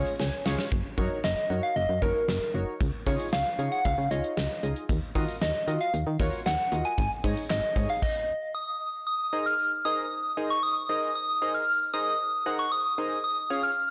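A straight 4/4 pulse at 115 BPM drives this wistful yet upbeat synth-pop excerpt, cut from a longer piece, with a gated 80s drum kit of tight kick, fat snare, hi-hat, handclaps, crash and bright cymbals set in a big, airy room. A solid FM bass sits up front with a punchy, round, digital tone, while warm analog keys built from pulse and sawtooth waves, with a filter sweep and chorus, fill in the harmony beneath. On top, a soft struck synth lead carries the melody with a gentle, keys-like, vintage FM sound, its warbling colored by chorus, tremolo and tape echo. After a short keys and drum fill opens the passage, the drums and bass drop out around 8 seconds, leaving the keys and lead to move from an Absus4 toward Abadd9 and a closing Db chord. The whole mix is blown-out and overdriven, with dulled highs and a moderate digital room reverb.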